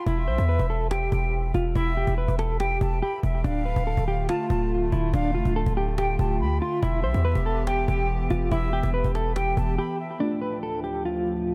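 A half-time trap groove at 142 BPM in 4/4 rides on soft-handed, woody cajon with faint snares, close and dry, while a punchy, heavy 808-style bass sits up front until a brief break at 9.8 s. Over a menacing, eerie E phrygian shift between Em and Dm, a dark, clean semi-hollow electric guitar carries the fingered melody with tremolo and delay, as a breathy, distant concert flute with vibrato and delay traces a second line high above. A mellow, airy pad with chorus joins at 3.4 s, and muted, intimate synth keys colored by chorus and phaser enter at 10.2 s, all within a light small-room ambience in this excerpt of a longer hip hop piece.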